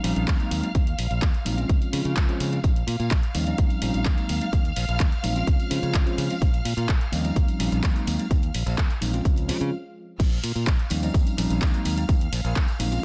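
Filtered disco house with a sensual, nostalgic glow, built on a cycling Eb13, Ab9, Dbmaj7 and Bb5 progression, where a bell-like tine electric piano with phaser, a lush, vibrato-rich symphonic violin section and a bright, up-front fingered electric bass all pump under sidechain and sit behind a low-pass filter. A house kit of handclaps, pumping hi-hats and crash cymbal in small room ambience runs from the start, plus a very quiet, saturated tambourine, and a punchy, layered electronic kick drum drives in from 0.3 seconds. After a brief stop at 9.7 seconds, the groove drops back in at 10.2 seconds within this dense, heavily limited, nearly dry mix cut from a longer piece.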